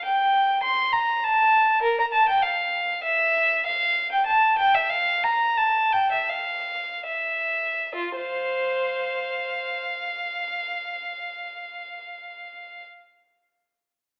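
The recording has a thin, telephone-like quality, with a moderate hall reverb that gives the solo line a sense of space, as if heard in a church or concert hall. This is a baroque-style suite movement for unaccompanied violin in F major, set in 3/4 with a flowing, dance-like character. The tempo moves freely between 65 and 103 BPM with rubato, and the pace slows from 2.7 to 7.9 seconds before a new section begins. A single bowed violin plays alone from start to finish, sitting close and up front, its tone clear and smooth with vibrato and an even delivery across its range from F4 to C6. The passage is cut from a longer piece and ends at about 12.9 seconds.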